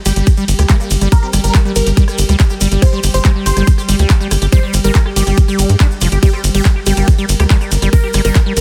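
This excerpt of alien, intense psychedelic trance in G minor at 141 BPM opens on a G5 chord as a tight, punchy sawtooth sequencer bass, a squelchy liquid acid bass riff, a detuned supersaw stab melody and a techno drum kit of handclaps, hi-hat, ride cymbal and rim click arrive together at 0.1 s, joined by a grainy tube shaker in the background. An overdriven electronic kick sits up front from 0.3 s, driving the straight 4/4 feel alongside the sequencer bass. The acid bass carries resonant filter sweeps, chorus and tape echo, while the supersaw stab, with its moving notch, runs through a phaser and digital delay, and both pump against the kick. Behind them, an evolving wavetable pad of morphing, slow-attack sustained chords enters at 0.5 s, softened by chorus and built-in reverb. A very quiet, juicy ring-modulated blip pluck adds a brief second line from 0.7 to 1.5 s and again later, all within a dense, heavily limited modern master.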